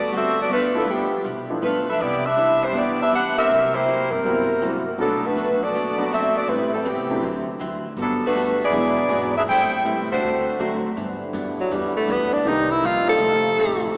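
Jazz swinging at 161 BPM in G major, this joyful fragment is cut from a longer piece and set in a church-like room with a long, wet reverb and a small-speaker sound. A saxophone section carries the melody up front until 10.8 seconds, its warm tone shaded with vibrato over lush harmony that moves from Gmaj9 through Cmaj9 and Bm7 toward turnarounds on E7, Am7 and D7. Underneath, a woody pizzicato upright bass with steel strings anchors the low end, while a clean, compressed hollow-body electric guitar picks out its accompaniment in the background and a clear concert grand piano with deep bass adds natural-sounding support. At 11.0 seconds the music shifts as a tight, vintage trombone section with light vibrato lays down sustained chords over G6, Cm7 and F7. A tenor saxophone then steps forward for a smooth-topped solo at 11.6 seconds, singing with vibrato in a jazz style before the fragment ends.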